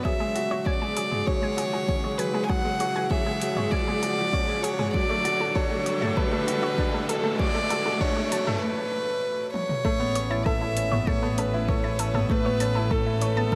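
Piano and strings electronica with a luminous, tender mood, heard as a short cut from a longer piece. Up front, a single violin carries the melody with a soft attack, airy sul tasto bowing and a pure, floating tone. A felt-muted upright piano plays a mellow, intimate riff with audible action noise and short sustain, while a bright string quartet holds focused chamber chords in the background. A round, nasal analog pluck adds arpeggios with a filter sweep, chorus, tape echo and sidechain pumping, as a background riser builds over the F#sus2 and D chords. A deep electronic kick sits up front beside a house drum kit with hi-hat and toms, both tape-toned and re-recorded in a small room. After a break at 8.6 seconds and a brief drum fill, the drop lands at 9.8 seconds on Aadd9, bringing in a warm, smooth bowed double bass section with vibrato and sidechain pumping, all set in a huge ambient reverb.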